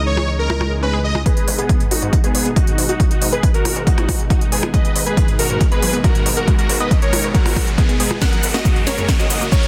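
Dense, heavily limited and nearly dry, this bittersweet, euphoric uplifting trance excerpt in G# minor at 138 BPM opens on a lush, chorused unison pad, a gritty, distorted synth bass sitting in the background, a huge, detuned supersaw melody with tape colour, delay and vibrato, a very quiet ring-modulated unison pluck playing arpeggios, a techno kit of cracking snare, smooth hats, shaker and percussion blips, and a background swell and riser, before a punchy, up-front electronic kick and a round, evolving analog pluck second line with tape echo enter at 1.3 seconds, driving a build-up of filter sweeps that ends in a drum fill from 8.2 seconds.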